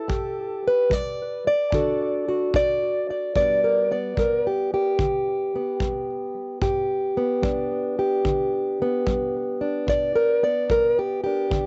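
Acoustic country blues in G major at a swung 74 BPM, this gritty, soulful excerpt puts a boxy, fingerpicked archtop guitar up front, colored by cassette tape and analog delay, soloing through the opening 3.4 seconds before the harmony settles from D to G, while a tight, small-room kick drum played with brushes sits lower in the mix of a dim, lightly reverberant home cassette recording.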